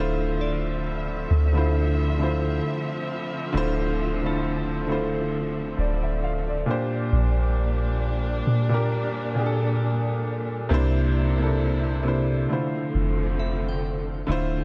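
Contemporary R&B in D minor at a slow 67 BPM, this sensual, moody excerpt moves in 4/4 with a light swing on the sixteenths. An up-front baby grand piano carries the accompaniment with long sustain, its chords shifting from Dm9 to Bb69 at 6.7 seconds, then to C9 and Dm7. Beneath it, a soft 808-style bass sits deep and round, its sine tone hitting with a fast attack before decaying. A lush studio string section holds sustained bowed chords with vibrato and a smooth top, set lower in the mix. In the background, a glassy, crystalline FM synth bell warbles through chorus, phaser and delay, appearing briefly at 0.4 seconds and returning at 13.4 seconds with a long release. The production is dark and warm overall, framed by light reverb and a small room ambience.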